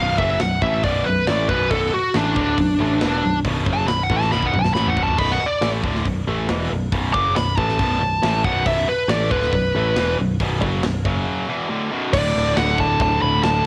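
A cassette home recording with light small-room reverb carries this heavy, menacing hard rock excerpt, where a bluesy, overdriven lead guitar with tape echo solos up front for the first 12.1 seconds over a double-tracked distorted rhythm guitar riff, a growly, punchy picked bass, and a polished metal drum kit with a tight kick and bright cymbals that adds a fill at 4.3 seconds.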